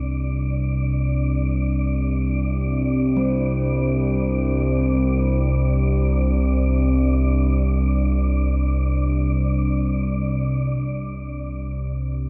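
Unfolding in free time, this unsettling, dark ambient drone is anchored by an up-front analog drone, vintage and warbling with chorus, while a breathy, wind-like tuned noise texture fades in across its span before stopping at 10.8 seconds, and a bright, metallic bronze singing bowl struck with a wooden striker rings in the background through tape echo from 3.2 to 8.9 seconds, heard within a vast, echoing space.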